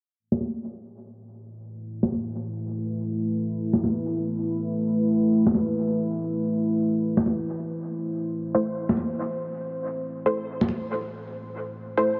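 Deep dubstep excerpt in free time and A minor, meditative and brooding, where bright, high-tuned congas with dub echo enter at 0.3 seconds, a dark, detuned sawtooth pad with a sub octave holds an A minor chord from 1.8 seconds under a filter sweep, and a muted, plucky filtered dub chord stab arrives at 8.5 seconds, all bathed in a huge ambient reverb.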